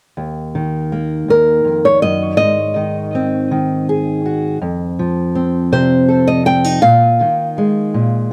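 A dark, fingerpicked steel-string acoustic guitar opens this intimate, melancholic folk-pop ballad at 0.2 seconds, setting a slow 6/8 pulse at 54 BPM in Eb minor as the chords move from Ebm through Ab7 and F to Bb7sus4. At 1.3 seconds a small, warm nylon-string guitar enters up front with a fingerpicked melody in its upper range, trailed by tape echo, while audible finger squeaks on both guitars add to the closeness. The light reverb and dry, close 1970s-style studio sound keep the two guitars near the listener throughout this short passage cut from a longer piece.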